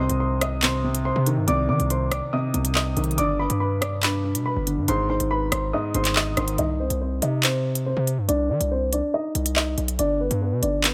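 Set in a small room, this menacing, cold drill cut rides a half-time feel. A dark, mellow baby grand carries the melody up front through a low-pass filter, gaining a filter sweep from 6.6 seconds, while a felt-muted upright adds soft, intimate accompaniment with audible action noise until that point. A punchy, heavy 808-style bass with a sine body, noise layer and fast, decaying attack sits beside an electronic drill kit of crisp hi-hats, handclaps and rim clicks, the whole fragment moving through minor-added-ninth, G and Ab chords.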